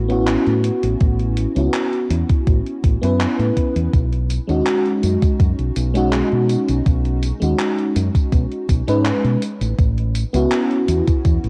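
A lush, detuned FM electric piano with a soft pad layer, smeared by chorus, delay and warbling cassette tape, opens this dreamy, faded vaporwave excerpt over a round, dark fingered electric bass, moving from A6 to B69 and back, while a quiet, gated 80s drum machine of handclaps, hi-hat and tambourine ticks along and a thumpy, up-front electronic kick enters at 1.0 seconds, all steeped in worn, drifting tape haze and light digital reverb.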